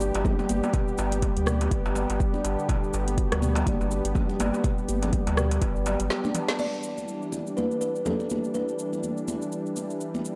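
Earthy and spiritual, this short afro house excerpt opens on a smooth, warbling sawtooth pad with chorus, a round sine sub bass up front, and ringing, meditative handpan arpeggios through analog delay, all pumping against a deep electronic kick, crisp metal-shelled darbuka, bright high-tuned congas struck with hard hands, and a produced drum kit with a woody snare and metallic hats. The kick drops out at about 5.7 seconds and the bass at 6.1 seconds, just as a drum fill begins. At about 6.6 seconds the handpan and darbuka fall away as the harmony moves from G to Em7, and a hollow, plucked kalimba with analog delay takes the melody. The sound is dry and gritty, with light reverb and a small room ambience.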